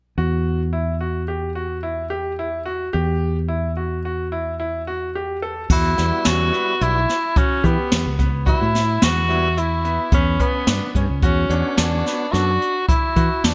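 A vintage-toned tenor saxophone with light vibrato carries the melody from 5.7 seconds through a digital delay, over brilliant, intimate piano arpeggios with audible action noise and a round, dark fretless bass that both play from the start, while brushed jazz drums with dark cymbals, a boomy kick and gated reverb enter with the saxophone and a lightly overdriven tonewheel organ with key click and fast rotary speaker sits in the background from 6.0 seconds, all shaping this driving, tense progressive instrumental excerpt in 5/4 at 109 BPM in E dorian, given a bright 1980s-style digital production and small room ambience.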